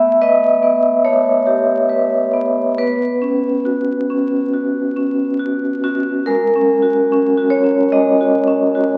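The rhythm flows freely in a rubato 4/4, hovering around 68-73 BPM, in this short contemporary classical piece for solo vibraphone, cut from a longer work. Played with medium hard mallets, the vibraphone sounds metallic and ringing, shimmering with a fast motor vibrato and placed up front, ranging from G#3 to E5 in a tuning of A4 = 438 Hz. The harmony opens on A9, moves to Bsus2 at 2.8 seconds, and shifts into a new section at 6.3 seconds on G#9sus4. The mood is warm and flowing. A wet recital hall reverb with a 1.4-second decay surrounds the instrument, and the sound carries the crackle of a very old 78 rpm record.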